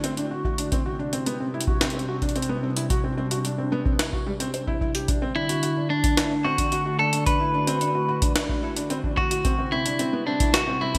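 A bright, 1980s-style digital production with moderate plate reverb frames this playful, wistful IDM passage at 110 BPM in D mixolydian, its harmony moving between D and C. A warbling, detuned tape-like pad holds dark sustained chords under chorus, while an intimate felt-muted upright piano plays mellow arpeggios up front through a low-pass filter and digital delay. A gritty, pitched-up jungle sampler-style kit of hi-hat and snare with gated reverb is joined at 0.4 s by a deep electronic kick, and at 5.4 s a clean, picked electric guitar adds a delayed melody.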